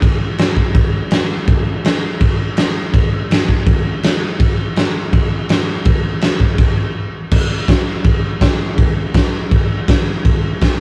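A rough rehearsal-room recording with light reverb carries this rowdy, raw rock fragment in straight 4/4, where an up-front acoustic garage drum kit with a dark, rolled-off top, a punchy kick, a fat snare and crash cymbal plays through the opening, hits a brief break at 7.0 seconds, and moves into a new section at 7.3 seconds until it cuts off at 10.7 seconds.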